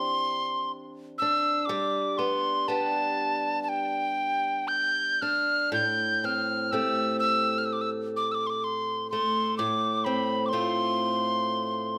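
Nostalgic and wistful, this excerpt from a Celtic slow air in 4/4 with a free, rubato feel sets an airy, mellow tin whistle up front, its tongued notes carrying a chiff and vibrato, over a picked old ladder-braced acoustic guitar whose dark, woody, boxy tone of aged strings moves through Cadd9/E, G, Am7 and F6/A, both heard together throughout in a moderate recital hall reverb.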